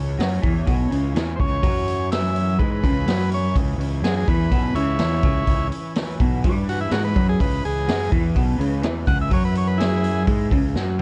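Trippy and mysterious, this psychedelic rock excerpt sits on a C# minor chord. A lo-fi, slightly broken-up electric guitar riff runs through a phaser over a growly fuzz bass. A gritty, punchy garage drum kit sits up front, enters at 0.2 seconds and ends with a fill at 10.8 seconds. Nasal, reedy bowed strings hold sustained chords in the background, while a buzzy vintage combo organ carries the melody through tape echo from 1.4 seconds, all with a dry cassette sound.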